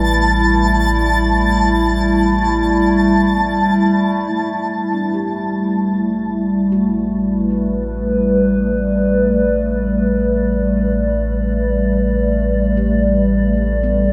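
Serene and spacious, this ambient fragment cut from a longer piece rests on a warbling, nostalgic tape-like pad holding sustained chords that open on A9sus4, with chorus, up front, over a round, deep analog bass, while a twinkling granular texture sparkles high above until 4.3 s and a very quiet, ringing handpan plays meditative arpeggios that fade in from that point, all bathed in a huge, wet reverb.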